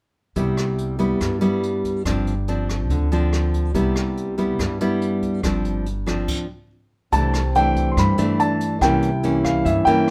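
A straight 4/4 bossa nova groove at 142 BPM in C major sets a relaxed, sophisticated mood in this short fragment of a longer piece, tuned slightly low at A4 = 439 Hz. Fingerpicked nylon-string guitar sits forward in the mix with a full-bodied classical tone and audible finger squeak, moving between Cmaj7 and G7sus4. Woody, thumpy pizzicato upright bass on gut strings anchors the low end. A distant, roomy brush kit adds dark cymbals, hi-hat, rim clicks and a punchy kick from a small room. After a stop from 6.3 to 7.1 seconds, the second section opens on C69 and C7b9 as a warm concert grand piano takes the melody up front with deep bass, and a mellow, close-miked trombone with vibrato plays a jazz-style second line in the background, all set in light reverb.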